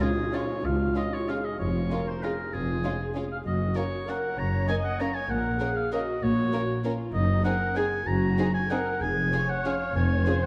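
Sweeping and festive, this short classical passage in Db major moves at a brisk 193 BPM in 3/4 with uneven, rubato beats, and is cut from a longer piece. A soft, pure violin section carries the melody sul tasto while a clear, distant oboe sits up front with a second line, alongside an intimate chamber violin section in the background and a lush, woody viola section that supplies accompaniment. From 0.6 seconds, a smooth-topped cello section and a floating double bass section anchor the bass, all within a dark, warm production and a moderate scoring-stage reverb.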